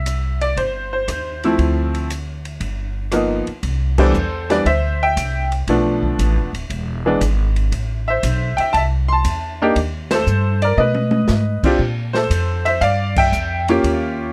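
Close, detailed and nearly dry, this swinging, sophisticated jazz piano trio in C major moves at 118 BPM, with a bright, slightly detuned upright piano carrying the melody up front over a woody, thumpy pizzicato upright bass on gut strings and a smooth open drum kit with dark cymbals and a boomy kick, as band accents land at 3.9 and 13.1 seconds and a short drum fill arrives at 10.8 seconds.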